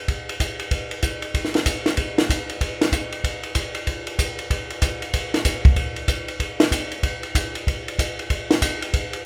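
Smoky and late-night in mood, this short jazz fragment is cut from a longer piece and swings at a brisk clip in four. A compact cocktail drum kit carries it alone from 0.1 to 9.2 seconds, playing hi-hat, kick drum, ride cymbal and snare drum. The kit sounds acoustic and dry, with dark cymbals, a high-tuned snare and a punchy kick sitting up front in the mix. A light reverb gives the room a faint sense of space around the playing. The swung eighth notes lend the groove a loose, nightclub lilt throughout its single section.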